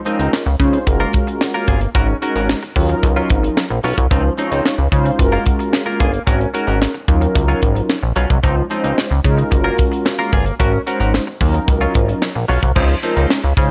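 A tight, up-front funk kit with a high-tuned snare, handclaps and hi-hat opens this slick early-eighties boogie funk cut together with mellow, brassy sustained synth chords that are round, detuned and dark with chorus and vibrato. A glossy, nasal synth bass with a plucky filter sits prominently underneath, while a bright, twangy clean electric guitar, recorded direct and compressed, picks a chorused riff. Over a looping cycle of lush ninth chords and a polished studio reverb, the groove stays funky and smooth until the guitar stops at 13.5 seconds, just before the rest of the band.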